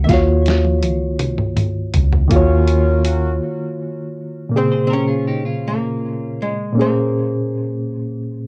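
A dry, cassette-worn home recording cut from a longer slow six-eight R&B piece at 54 BPM, sultry and yearning, where a dark, hollow-body archtop guitar picks the melody over a reedy, slightly out-of-tune electric piano with harmonic tremolo, a round, foam-muted bass and a gritty, compressed sampler-style drum kit that opens with a fill, while a mellow, tight horn section adds brief stabs at 2.3 seconds, a break follows from 3.4 seconds, and a twangy, chorused clean electric guitar offers a second line from 4.7 seconds as the harmony moves from Ebm9 to Bbm9.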